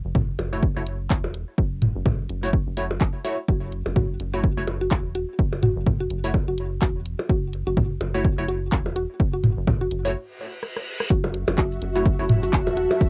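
An overdriven, punchy electronic kick sits up front throughout this quirky, hypnotic minimal techno excerpt, driving a swung 4/4 groove alongside tape-warm electronic toms and percussion blips and a layered garage kit of handclaps, hi-hat, rim click and shaker. Beneath them a rubbery, hollow square bass bounces with sidechain pumping, while a crisp, detuned wavetable chord stab colors the top with phaser and analog delay. At 3.5 seconds a woody, mallet-like synth pluck enters with a short-decay riff, treated with chorus, tape echo and its own pumping. A break arrives with a reverse cymbal and a drum fill, and at 11.1 seconds the drop lands as the harmony shifts to a minor seventh, with an ethereal, airy pad entering just after, bringing slow attack, ensemble chorus, tremolo and built-in reverb. The whole piece carries the light reverb and character of a home cassette recording.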